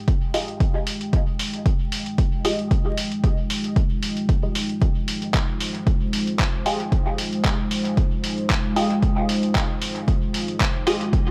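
A punchy, up-front electronic kick and a muffled, overdriven lo-fi sampler kit of handclaps and hi-hat set a lightly swung 114 BPM pulse in 4/4 for this cavernous, meditative dub techno excerpt in F minor, where muted, detuned chord stabs with phaser and dub echo sit over a deep, warbling ambient pad that holds an Fm9 chord with chorus, 12-bit sampler grit and sidechain pumping, the whole mix framed by light digital ambience and vinyl crackle.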